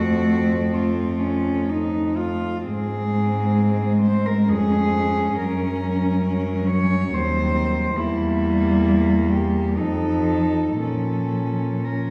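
Solemn and melancholic, this classical fragment for four warm, bowed cellos drifts in a rubato 3/4 at 56-71 BPM. A pure, floating, distant top cello sings the melody sul tasto, while an intimate second line with light vibrato and a close, airy-bowed accompaniment voice fill the middle. An up-front bass cello anchors harmony that moves from F through Ab, Db/F and Gb into diminished shadings before F7 resolves to Bbm, every part softly attacked and bathed in the wet reverb of a recital hall heard from further back in the room.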